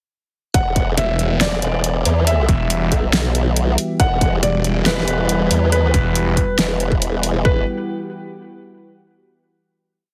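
Heavy wobble dubstep in E minor at 139 BPM, this short, menacing and chaotic piece moves in a half-time feel, with a drop from 0.5 seconds built over an Emadd9 chord that gives way to a final chord. A formant-sweep wobble bass leads the low end with detuned, chorused phrases whose wobble speed keeps changing. From 1.0 to 6.4 seconds, a snarling, growling sawtooth bass with distortion and overdrive adds bright, chopped phrases that answer it. A punchy, tape-warm electronic kick and an overdriven dubstep kit with a huge snare and closed and half-open hi-hats drive the half-time beat up front. Above them, a lush, warbling vintage pad holds full-bodied chords that pump under sidechain, while a soft, felt-muted upright piano repeats an intimate riff melody through tape echo. The mix is dry, with the heavily compressed punch of a radio broadcast.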